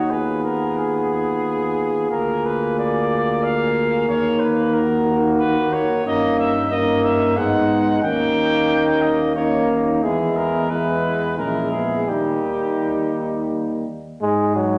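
Heroic and grave, this classical brass quintet passage, cut from a longer piece, moves in a rubato three-beat lilt through a wet recital hall, with a clear, distant trumpet carrying the melody over a soft-attacked, warm flugelhorn second line, a bright, vintage trombone up front, a mellow French horn in the background and a tuba with vibrato anchoring the bass until its final note at 14.8 seconds.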